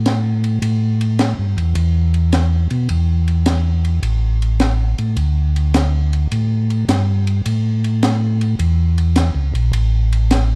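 Soul jazz organ trio excerpt with a soulful, bluesy mood and a swung feel in 4/4, where a mellow tonewheel organ carries the bass line in a low register and sits up front, its round, clean tone coloured by vibrato, key click and a slow rotary speaker. A compact cocktail drum kit plays hi-hat, ride cymbal and a high-tuned snare drum, sounding acoustic and smooth with a rolled-off top, as if in a small room, set lower in the mix than the organ. The production is dark and warm with little reverb, and the organ plays throughout the 10.6 seconds while the drums enter at 0.1 seconds.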